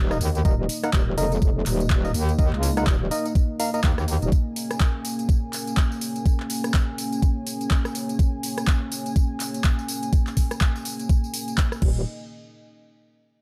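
A metallic, saturated FM wobble bass opens this bouncy, aggressive bass house excerpt at 124 BPM with a swung 16th-note feel, dropping out at 4.3 s and returning at 11.8 s, while a hollow, percussive organ stab with chorus and digital delay plays until 3.8 s. Throughout, a moody, detuned sawtooth pad sustains dark chords under sidechain pumping, and an overdriven big-room kit of metallic hats, handclaps, rim clicks, tambourine and crash sits behind an up-front, tape-warm knocking kick, all set in digital ambience.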